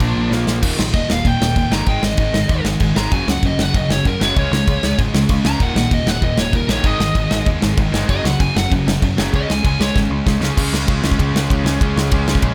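A biting, overdriven lead guitar tears through a solo from 0.6 to 10.6 seconds in this rowdy, rebellious punk rock clip, racing at 193 BPM over chords that move from Bb to Eb and then cycle through Ab5, Gb5, Db5 and Eb5 power chords. Behind it sit three picked rhythm guitars playing riffs: a tight distorted one, a warm overdriven one and a double-tracked, compressed fuzz guitar, while a growling, punchy electric bass with overdrive drives the low end. A big, up-front acoustic drum kit with bright cymbals and a punchy kick throws in fills at 0.3 and 10.0 seconds, all in a dry room with little reverb.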